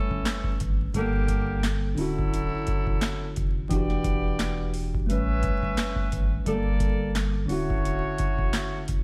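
Vinyl crackle sits over a digital ambience in this soulful, confident boom-bap hip-hop excerpt at 87 BPM in D major, swung on the 16ths. A booming analog drum machine sits up front with a deep kick, tonal snare, metallic hi-hats and handclaps, tape-warm and re-recorded in a large room, while a round sine sub bass holds down the low end. A worn, slightly out-of-tune tine electric piano comps through a filtered progression moving from A9 through Gmadd9, Dmaj9 and Em9, and a distant, roomy horn section with light vibrato punctuates it with delayed stabs until 8.8 seconds.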